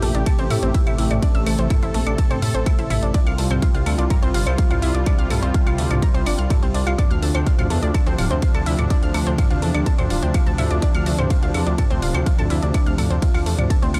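A sustained pad, an arpeggiated analog pluck, a dark detuned saw bass and a house drum kit of claves, hi-hat, ride cymbal and toms sound together from the start of this melodic techno excerpt. A punchy, up-front electronic kick joins at 0.3 seconds and anchors the hypnotic, melancholic pulse, with the kit, pad, pluck and bass all breathing to sidechain pumping. The bass is the deepest, most prominent melodic layer, a rumbling, beating unison of detuned sawtooth and sine, thickened by transformer saturation. Above it, the pad holds smooth, soft-attack chords with chorus and tremolo, moving from Am7 to Csus4 to Dm7. The pluck adds round, nasal, wave-folded arpeggios with a noise layer, a short decay, chorus and tape echo that reach up into a brighter register. A small room ambience surrounds the drums, and the whole mix has a dry, gritty hardware character with a transformer-saturated edge.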